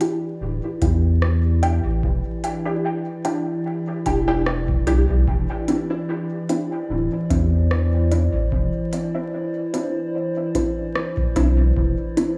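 A round, sine-like sub bass sits up front from 0.4 seconds, tube-saturated and deep, anchoring this meditative, hazy ambient dub piece with a gentle swing. Above it, a muted, detuned dub chord stab plucks through a filter sweep with phaser, ensemble chorus and dub echo, while a warbling, nostalgic tape-like pad holds dark, lo-fi sustained chords that move from Em7 to Cadd9 at 5.3 seconds. An analog-sounding kick arriving at 0.8 seconds and a produced electronic kit of crisp hi-hats and rim clicks trailed by dub echo complete the groove, all wrapped in vinyl crackle and light studio reverb in this section cut from a longer piece.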